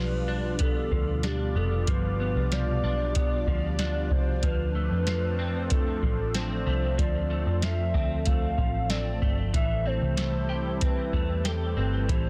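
Floating and ethereal, this dream pop fragment drifts over G7, Dm7 and Am7 as a woody, vibrato-tinged clarinet-like synth lead sings through chorus and digital delay above a thick, detuned unison pad treated with chorus and phaser, while a semi-hollow electric guitar plays dark, clean arpeggios through ensemble chorus and delay, a round, foam-muted vintage picked bass holds the low end, and a soft vintage rhythm box with a deep kick, tonal snare and metallic hats sits up front from 0.6 seconds, the whole set in light reverb within a dense, heavily limited modern master.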